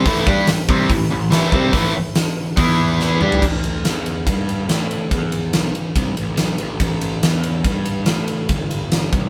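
A stone-room live sound frames this driving, menacing hard rock excerpt in A minor at 142 BPM, where a biting, phaser-tinged guitar and a bright, up-front overdriven guitar play the riff over Am, E5 and G5 until 3.4 seconds, a growly fuzz bass and a huge arena kit with a fat snare, punchy kick and bright cymbals carry on to 9.3 seconds, and a drum fill at 3.0 seconds leads into the unaccompanied stretch of bass and drums.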